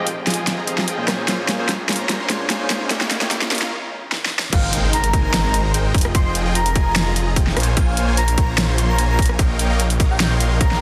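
Bittersweet and lush, this future bass excerpt at 148 BPM in a half-time feel builds with a barky tine electric piano, a very quiet shimmering pad, a riser and thick detuned saw bass under huge pumping supersaw chords and an overdriven big-room drum kit with a huge snare, then drops at 4.5 s with an impact, a hard-clipped up-front electronic kick and an airy, dreamy lead carrying chorus, vibrato and dub echo over Fm9, Bbm9 and Eb9/Bb chords, all in a dense, heavily limited modern master.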